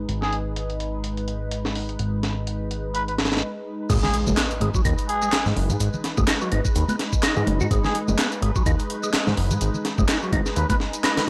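A swung breakbeat groove at 126 BPM in G# minor drives this swaggering, raw excerpt, with a compressed, sampler-style kit of thumpy kick and high-tuned snare up front under low-pass filtering, and a fat, detuned sawtooth bass holding the low end from the start. A cup-muted trumpet carries a raspy, growling jazz melody with scooped notes and tape echo over a swirling phased pad with sidechain pumping, and after a short break the drop lands at 3.9 s with a downlifter and impact. There the mix fills out with a percussive tonewheel organ riff through a fast rotary speaker, layered electronic shaker and handclaps, and soft-handed congas in the background, all in a dry, gritty hardware sound.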